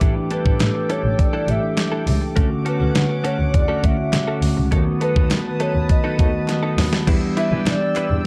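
Romantic and glossy, this 1980s-style pop excerpt rests on a mellow tine electric piano, a shimmering pulse-width pad and a clean, picked electric guitar riff treated with analog chorus, over a dark, bowed double bass with vibrato and portamento. A thumpy, tape-tinged 12-bit drum machine sits up front with kick, snare, hi-hat, tambourine and crash, joined by barely audible group handclaps from 0.6 s, while a hollow, woody clarinet-like synth lead carries the melody from 0.3 s. A drum fill at 6.5 s leads into a new section where a second, very quiet electric guitar line appears at 7.4 s, set in a dark, warm production with light reverb.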